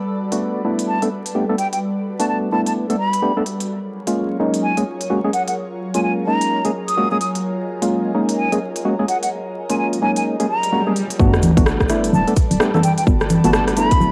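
Soulful and sunny, this two-step UK garage excerpt moves at 128 BPM in 4/4 with a 61% swing on the sixteenths, cut from a longer piece and built over Gmaj9 and F#maj9 chords. Two background pads open it from the start: an airy, breathy pad with chorus, phaser, vintage 12-bit sampler grit and sidechain pumping, and a warbling, nostalgic, dark pad carrying ring modulation, built-in reverb and the same pumping, both soaked in cassette tape. A hollow, mellow organ stab with chorus sits up front under a filter sweep, while the garage drum kit of congas, crisp hi-hats and rim clicks plays tape-warm, re-recorded in a large room. From 0.9 seconds a breathy concert flute carries the melody with vibrato, lifted highs and tape echo, singing expressively high above the chords. A background swell and sub drop rises from 10.5 seconds into the drop at 11.2 seconds, where a tight, layered electronic kick, a bouncy, punchy FM bass with a hollow knock and a very quiet, grainy egg shaker join in. 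Light reverb, vinyl crackle and the character of a home cassette recording give the whole piece a lo-fi, nostalgic patina.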